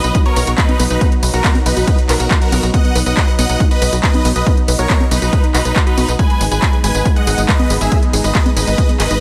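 Euphoric and uplifting, this excerpt of trance at 139 BPM in B major moving from B to G#m at 6.2 seconds sets a huge, detuned supersaw lead with phaser, tape echo and sidechain pumping over a thick, warbling vintage pad with chorus and a lush background pluck arpeggio with cassette-tape grit and echo, all driven by a nasal, punchy sequencer bass, an up-front layered electronic kick, and a big-room kit of crisp hats, ride cymbal, handclaps, tambourine and congas in a digital ambience.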